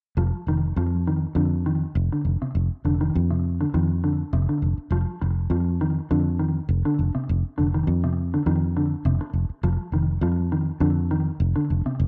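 At 0.2 s a mellow electric guitar and a fingered electric bass enter together on an F5 chord, opening this hypnotic, joyful afrobeat excerpt in 4/4 at 102 BPM with a light sixteenth-note swing. The guitar plays clean, fingered arpeggios in a low register, its dark tone sitting up front and trailed by a slapback echo. Beneath it, the bass carries the low end with a round, foam-muted sound that is direct and amped, placed close and a little louder than the guitar. Both parts run through the whole clip, the guitar stopping at 12.0 s just before the bass. A light reverb gives the pair a modest sense of space.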